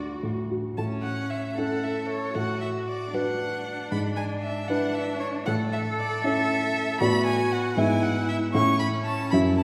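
Heard from further back through a wet scoring-stage reverb, this spirited, graceful classical-period piano trio movement in a rubato 6/8, cut from a longer piece, sets a dark, mellow grand piano up front with short-sustained accompaniment alongside a close, smooth cello second line from the start, while a rich violin enters at 0.8 s to carry the expressive melody with vibrato and portamento.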